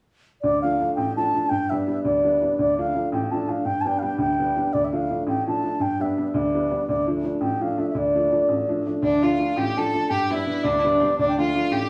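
A mellow, pure-toned wooden baroque flute carries the tune from 0.4 seconds, tongued and shaded with vibrato and a plate reverb, over a woody, boxy upright piano with short sustain, in a dark yet spirited Celtic folk piece in D dorian at 112 BPM in a lively 6/8. The harmony rocks between Dm and G, and at 9.0 seconds a single bowed fiddle joins as a second line, rich and focused with light vibrato. The players sit up front, though the studio reverb places the group a little further back in the room in this short cut from a longer piece.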